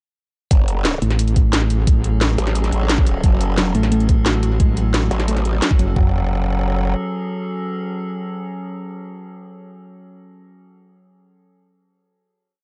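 A shadowy, muffled mix carries this mechanical, aggressive dark technical drum and bass piece: an overdriven, knocking kick and toms and a cracking snare with metallic hats drive the drop from 0.5 seconds under a growling, formant-filtered bass and an FM wobble bass that enters at 1 second to answer it, a lush, detuned unison pluck arpeggio with delay sits in the background from 3.2 seconds, and an eerie, ring-modulated inharmonic drone with slow attack and reverb rises from 1.3 seconds and sustains the final chord until 9.5 seconds.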